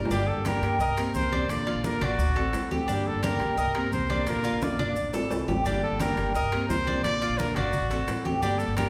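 Fingerpicked steel-string acoustic guitar, a metallic double-strung Cuban tres playing arpeggios and a woody, thumpy pizzicato upright bass open this danceable G minor Cuban son and guajira excerpt at a brisk 173 BPM in straight 4/4, cycling through Gm, Cm7, Bb and D7. From 0.1 s, a smooth, up-front solo trumpet carries the melody with vibrato, while low-tuned congas, ringing metal-shell timbales and grainy maracas sit in the background, with a drum fill from 4.6 to 5.7 s. The ensemble sits in the lush reverb of a recital hall, giving the music a warm, spacious glow.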